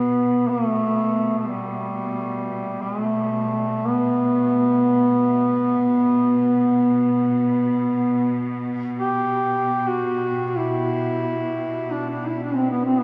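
Drenched in a huge, dreamy reverb that lingers for about 8 seconds over a small-room ambience, this solemn, longing Caucasian folk lament unfolds in free time, tuned to A4 = 438 Hz and cut from a longer piece. Up front, a solo duduk sings the melody between G3 and G4 with a mellow, soft-attacked tone and scooped, folk-style notes. Beneath it, from 0.0 to 13.0 seconds, a symphonic string section holds a bowed drone on B2, lush and biting with intense vibrato and a bright edge, sitting well behind the reed.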